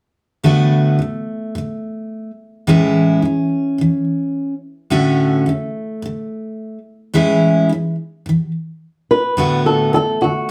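Sunny and carefree, this short acoustic pop excerpt moves at 107 BPM in 4/4 with a light swing on the sixteenths, tuned slightly under standard pitch. A picked steel-string acoustic guitar carries the accompaniment from 0.4 seconds, its jumbo body giving a bright, full-bodied tone that sits up front. The harmony drifts through Bm7/A, Amaj7 and Dmaj7/A over an A in the bass, lending an easy, open feel. At 9.1 seconds a flamenco guitar joins with the melody, its dark, thumb-plucked voice marked by audible finger squeak and placed just as close as the accompaniment. The two guitars sound like they were played together in one room, wrapped in a wet studio reverb that adds a gentle sense of space.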